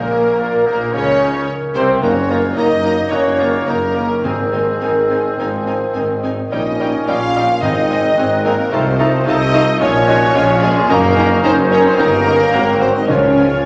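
A rubato 4/4 pulse at 109 BPM carries this restless, urgent fragment of a fast, dramatic romantic symphonic movement, where a distant, lush violin section sings the melody over second lines from a smooth second violin section, an airy, hollow flute section, a close-miked oboe and a dark clarinet, while an intense viola section and a roomy bassoon accompany, vintage-toned trombone and mellow French horn sections hold sustained chords, a ringing concert harp plays arpeggios, rich cellos, focused double basses and tuba anchor the bass, and dry timpani enter at 4.2 s and return at 13.1 s, all set in a wet scoring-stage reverb.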